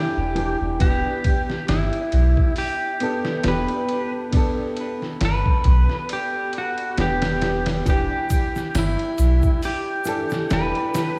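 Dark and hypnotic, this trip hop excerpt rests on a single Em7 chord with a gentle 16th-note swing. Up front, a twangy, scooped lap steel guitar carries the slide melody through tape echo. Alongside it sit a woody upright piano with audible action noise, harmonic tremolo and long sustain; a deep, round dub sub bass with tube saturation that enters at 0.2 s; and a gritty, pitched-down sampler-style drum kit of thumpy kick, medium-tuned snare, hi-hat and ride, overdriven and compressed. Egg shaker and triangle slip in close and dry in the background at 7.9 s, all within a dreamy mix soaked in plate reverb with small room ambience.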